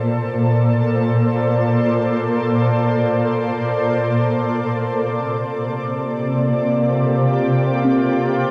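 Ambient music in free time and Bb major, this short excerpt from a longer piece feels peaceful and weightless, set in a vast, echoing space with a cassette-tape character. A shimmering, ethereal pad sits up front, holding sustained chords with an octave-up shimmer, detuned unison, slow attack, long release and a granular, bright sheen under chorus and its own reverb. Beneath it, a dark studio cello section plays a low bass line in the background, bowed sul tasto with light vibrato and an intimate, close sound. At 2.6 s, muted, felt-like synth keys enter with soft, full-bodied arpeggios that decay after each note, kept dark and distant with chorus. An evolving, warbling analog drone joins at 6.1 s, its vintage sawtooth and pulse-width-modulated tone swelling in slowly under chorus. The harmony moves from Bbmaj7 to Csus2 at 5.1 s.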